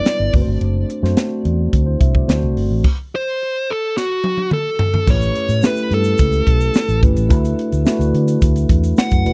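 Slick and urban, this excerpt of polished 1980s jazz-funk pop sets a dark, overdriven lead guitar melody with tape echo over a mellow tine electric piano with subtle chorus, a round, foam-muted fingered bass and a crisp fusion drum kit with a high-tuned snare and tight kick, breaking into a stop at 2.8 seconds with a drum fill at 4.0 seconds before a grainy egg shaker joins in the background at 5.1 seconds, in a dry, close studio recording.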